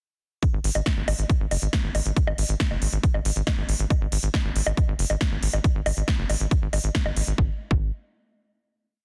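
A straight four-on-the-floor pulse from an overdriven electronic kick drives this short psychedelic trance piece, together with a punchy, tape-warm drum kit of programmed crisp hi-hats, high bongos and a snare backbeat, all up front with little reverb. A tight, rolling sixteenth-note sequencer bass built from sawtooth and square waves, with a fast-attack filter pluck, holds the low register around F#1 to G#1 through a hypnotic drop from 0.4 seconds to 7.4 seconds. The dense, heavily limited mix then settles into a final note that rings until 9.0 seconds.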